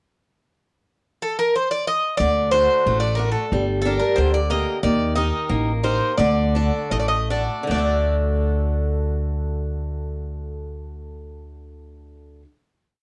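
Bittersweet and moody, this short Greek folk piece in 2/4 opens with a bright, metallic bouzouki alone at 1.2 seconds, its double strings carrying an ornamented modal melody before the boxy, fresh-stringed picked guitar joins at 2.2 seconds with an oompah of bass notes and chord figures and the woody, thumpy pizzicato upright bass plays root and fifth on the main beats, the trio slowing down from 4.8 seconds into a final chord, all heard through light reverb and the warbly pitch drift of worn old cassette tape.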